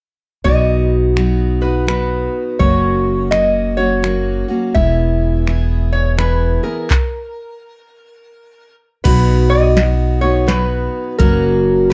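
A nasal, fingerpicked lap resonator guitar with slapback echo sings a slide melody over a bright, full-bodied picked acoustic guitar, joined at 0.5 s by a woody, thumpy upright bass and a soft analog rhythm box with deep kick, tonal snare, claps and metallic hats, in a sunny, nostalgic swung honky-tonk waltz taken from a longer piece, whose dark, lightly reverberant production holds a stop at 6.9 s before the band returns at 9.1 s.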